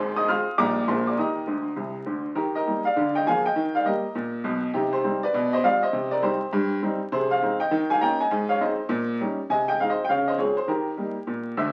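A clear, woody upright piano plays solo stride jazz at a brisk 202 BPM with a playful, swinging feel, its boxy, short-sustained tone sitting up front in moderate studio reverb, spanning Ab1 to F6, adding a fill from 1.5 to 2.4 seconds, and shifting from Eb major to Ab major at 7.1 seconds, all heard through the crackle of a very old 78 rpm record in this roughly 12-second cut from a longer piece.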